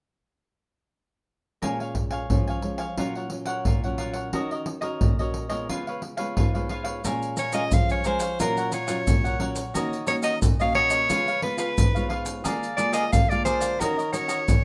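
A straight 4/4 samba and choro groove at 89 BPM in Bb minor opens at 1.6 seconds, with a deep surdo, pandeiro and maracas played with soft hands up front in a small-room sound, beneath a crisp, picked cavaquinho and a thumb-plucked classical nylon-string guitar cycling through Bbm7, Gbmaj7/Bb, Ebm7 and Db7. At 7.4 seconds a bright, punchy soprano saxophone takes a forceful jazz-style solo with scooped notes, while the harmony turns through Bb7/D near the end of this nostalgic, lively passage cut from a longer piece, all set in moderate studio reverb.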